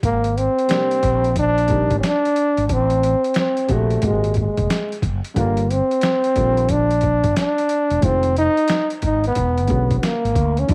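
Jazz-hop with a cool, smooth mood, moving at 90 BPM in 4/4 with a swung sixteenth-note feel across this short cut from a longer piece. A breathy trombone carries the melody up front from 0.1 seconds, its vibrato and scooped notes giving the solo a smooth jazz character. Beneath it, a round, direct fretless electric bass holds the low end, while a boom bap sampler-style drum kit lays down hi-hat, a thumpy kick and a medium-tuned snare, its pitched-down, compressed sound roughened by overdrive. A woody upright piano enters at 0.7 seconds and sits in the background with audible action noise, short sustain and an intimate, vintage tone. The harmony drifts through lush extended chords, from Abmaj9#11 through Gm7 and Fm7 to E13, and a light studio reverb and vinyl crackle add a dusty sheen.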